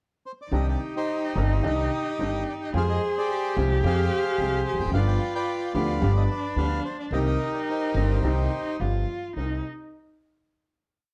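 A dark, warm studio sound with moderate reverb frames this brief, dramatic and melancholic tango in C minor at 109 BPM, where a reedy, close-miked bandoneon carries a motif-based melody over an expressive bowed cello counter-melody with vibrato and portamento, a clear, boxy upright piano, a very quiet second bandoneon playing smooth milonga stabs, and a woody pizzicato upright bass up front driving the milonga rhythm, all settling on a final C minor seventh chord at 9.4 seconds.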